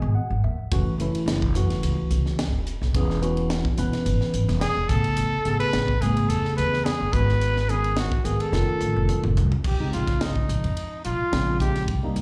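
A clean tine electric piano, phased and sent through a combo amp with slapback echo, opens with a fill over a woody, thumpy pizzicato upright bass; a tight funk drum kit with a high-tuned snare joins at 0.7 seconds; and a vibrato-rich trumpet with soft attack and slapback echo carries the melody from 4.6 seconds before soloing at 9.6 seconds in this slick, intense electric jazz fusion piece at 108 BPM in F# dorian, heard live through a club PA with light reverb.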